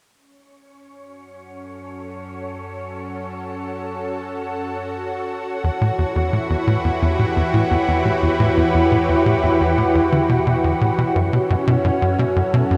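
A lush, thick unison pad opens this mysterious, cosmic stretch of sequencer-driven space music, fading in with bright, detuned sustained chords treated with chorus and a shimmer reverb. A vintage analog drone joins in the background at 1.4 seconds, warbling and evolving in the bass under its own fade-in, while an airy, breathy wind-like tuned noise texture hovers high above with its own shimmering reverb. At 5.6 seconds a tight, punchy sequencer bass riff arrives up front, its plucky, fast-decaying sawtooth and square tones carrying a moving notch filter and delay that give the piece a driving pulse in straight 4/4. At 11.2 seconds a new section begins with a mellow, barely audible Celtic harp ringing out fingerpicked arpeggios. The production is dark and warm, steeped in a lush hall reverb, and the excerpt is cut from a longer piece.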